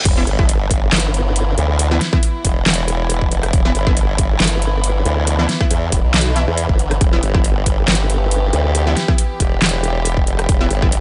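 Half-time heavy wobble dubstep at 138 BPM in E minor with a slight swing, cut from a longer piece, it opens on a drop where a very quiet reverse cymbal and sub drop mark the impact through 1.8 seconds, while a punchy, overdriven electronic kick and a layered dance kit with a huge snare and metallic hats sit up front. A compressed sawtooth-and-sine wobble bass with formant filtering and chorus growls throughout, joined briefly from 0.9 to 1.6 seconds and again from 4.4 to 8.5 seconds by a second detuned pulse-wave wobble layer. Bold, detuned orchestra-hit-like synth stabs with a noise layer, filter sweep, reverb and delay cut through over a dark, nasal, gut-string chamber section that sustains chords in the background with sidechain pumping, giving a chaotic, menacing mood in a digital ambience.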